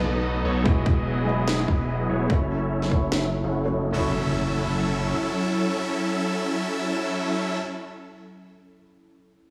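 Huge, bright supersaw chords lead this bittersweet, lush future bass excerpt at 146 BPM in a half-time feel, their detuned sawtooth unison pumping with the sidechain and run through a filter sweep, low-pass filtering and digital delay, over a soft felt-muted upright piano with audible action noise sitting in the background and a very quiet, ethereal pad with slow attack and ensemble chorus. A thick, tube-saturated sub bass holds the low end until 5.1 s, while a hard-clipped kick up front and a sharp, tape-tinged snare play briefly between 0.7 and 3.2 s, both bathed in studio reverb. The harmony moves through B7, Emaj9 and F#m7 within a lush hall reverb, and an electronic impact sounds in the background from 3.9 s.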